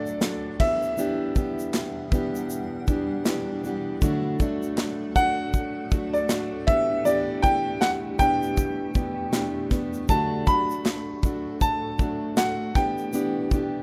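A carefree, heartfelt acoustic pop passage at 79 BPM in 4/4, with a swung sixteenth-note feel, cut from a longer piece. A bright, woody upright piano with a vintage character carries the melody up front, while a fingerpicked plugged-in steel-string acoustic guitar with fresh strings and a full-bodied jumbo tone supplies the accompaniment. Beneath them, a quieter granular cloud pad holds sustained chords, its blurred, evolving, detuned texture softened by slow attacks, long releases and its own reverb. A modern studio drum kit enters at 0.1 seconds with a punchy kick, medium-tuned snare, shaker and bright crash cymbals, joined by very quiet, crisp, close group handclaps from 0.2 seconds until 12.6 seconds. The harmony moves between D and Em7, and the whole sits in light small-room ambience with the rough feel of a home demo mix.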